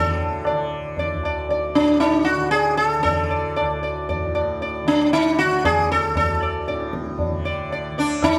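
A plucked sitar stands up front, its buzzing tone and shimmering sympathetic strings carrying a devotional, meditative melody between D4 and D5. Beneath it, a softly plucked tanpura holds a low drone from D2 to D3, sitting well back with a warm buzz of its own. The tabla joins at 0.5 seconds, low-tuned and ringing, and sounds distant, as if heard across a large room. This short Hindustani classical passage moves in a straight three-beat metre and is cut from a longer piece. A moderate recital hall reverb gives the trio a natural, open setting.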